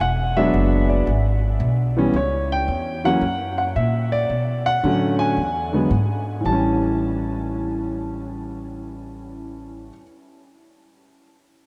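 An up-front, intimate concert grand piano with audible action noise carries the melody in this playful, sophisticated swinging jazz trio fragment, over a woody, thumpy pizzicato upright bass on gut strings, as the harmony moves from E7 through C#dim and Bm7 to land on A7 at 6.4 s, all set in a vast, echoing space.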